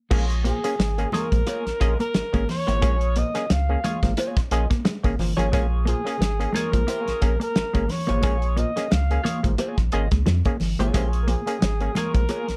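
Funk at 89 BPM in 4/4 with a light sixteenth-note swing, this cool, driving piece cut from a longer one sits on a single Bb minor seventh chord in Bb minor throughout. A cloth-damped, thuddy drum kit with a fat snare, tight kick and dark cymbals sits up front beside a round analog bass that is deep and sustained, with a filter sweep and fast attack. A muted, stringy clav plays overdriven stabs through auto-wah, while an electric guitar at the edge of break-up adds picked accompaniment with wah and analog chorus. Beneath them, a mellow, clean electric guitar plays a low fingered riff, and high-tuned, ringing congas sit saturated in the background. From 0.4 seconds, a trumpet with a bucket mute carries the melody in a veiled, breathy jazz style, with light vibrato, scooped notes and a distant, whispered intimacy. The mix is dry, with little reverb.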